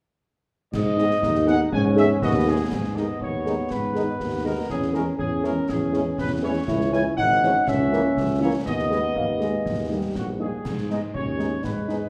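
Resolute and martial, this military-style wind band march in 2/4 sets a punchy, up-front trumpet section on the melody over a mellow tuba bass and a concert snare drum, concert bass drum and dark-toned clash cymbals, while a very quiet, distant French horn section adds accompaniment, a trombone section with light vibrato holds sustained chords in the background, and a soft-attack euphonium enters with a second line at 2.7 seconds, set in a reverberant concert hall.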